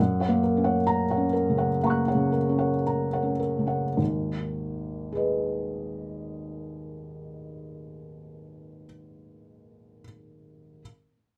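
A felt-muted upright piano plays alone in this wistful, melancholic fragment of neoclassical minimalist piano, its muted, intimate tone sitting up front with audible action noise and a vintage character. In G# minor and loose 4/4 rubato at 51-68 BPM, the opening slows over an F# chord before settling onto G#m at 4.0 seconds. The piano spans a range from deep bass to high treble, tuned slightly low to A4 = 438 Hz, in a moderate studio room ambience.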